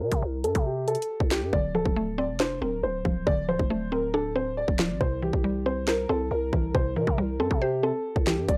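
A dry, gritty hardware recording with transformer saturation and a digital ambience gives this short cut from a longer drill track a dark, cold feel at 138 BPM in a half-time 4/4 pulse. A dark, mellow baby grand piano carries the melody up front, its worn, boxy tone and audible action noise making it feel intimate beneath a low-pass filter. A growling, buzzy 808-style bass with a fast attack and decaying sine body runs underneath, while the tape-warm electronic drum kit pairs a hard-clipped kick and sharp snare with handclaps and bright hi-hats. The opening is marked by a filter sweep. At 1.5 seconds a woody, round, FM-style synth pluck with a noise layer, chorus and short percussive decay enters as accompaniment, and from that point the hi-hats are muted. The harmony moves from C5 to Dm7, then settles on C at 5.0 seconds.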